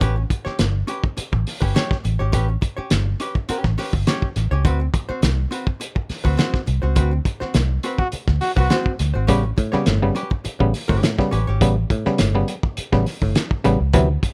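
A cloth-damped, thuddy drum kit with a fat snare, a round, foam-muted fingered bass and a dark, hollow-body archtop guitar open this strutting, playful funk groove at 103 BPM in A mixolydian, moving from A9 to D6 and back, while a brilliant trombone punches a single scooped note with vibrato at 8.0 seconds during a band accent and a stringy, muted clav enters with stabs at 9.3 seconds, heard in a rough home demo mix with small room ambience.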